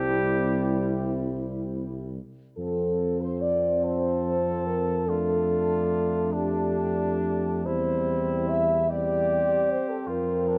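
Tender and lyrical, this slow, hymn-like classical excerpt for brass band moves in a rubato 6/8 at roughly 42-51 BPM in F major. A flugelhorn carries the melody with light vibrato and a warm, vintage tone, while a mellow, close-miked French horn section sings a second line above it. Beneath them a bright trombone section and a warm euphonium sit in the background as accompaniment, and an up-front tuba anchors the bass with its own light vibrato. All five parts sound together from start to finish, the harmony settling from C onto F at 2.6 seconds and closing on F at 10.1 seconds. Close, detailed microphones capture the players inside a moderate concert hall reverb that lends the chords a gentle glow.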